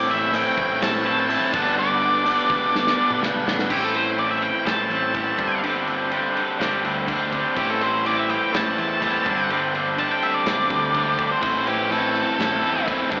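This brooding stretch of quiet-loud alternative rock, cut from a longer piece, opens with an octave-fuzz lead guitar carrying the melody over two riffing guitars: an up-front, bright, overdriven electric guitar with slapback echo, and a compressed fuzz guitar with slapback echo sitting in the background. A growling picked electric bass, overdriven and round, anchors the low end. A loose indie drum kit, punchy in the kick with a medium-tuned snare and dark cymbals, comes in at 0.3 s and stays back in the mix. A drum fill leads into the lead guitar's solo at 3.7 s, where the fuzz guitar drops out and a twangy, clean guitar adds chorused arpeggios beneath it until the fuzz guitar returns at 11.4 s. The harmony moves between Am7 and G or Gsus4 before settling on Am, and the whole performance sounds like a live gig heard through the venue's PA, with moderate club reverb and an AM radio coloring.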